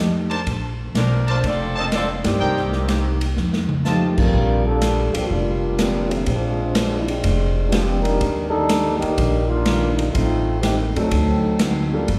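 Big band swing with a brassy, joyful mood, this excerpt opens with a tight saxophone section melody over woody pizzicato upright bass, a very quiet picked steel-string acoustic guitar and a polished hall drum kit, bright trumpet stabs and a band accent at 2.2 seconds, before a dark trombone section takes a solo from 4.3 seconds with a concert grand piano in the background, all in a reverberant recital hall.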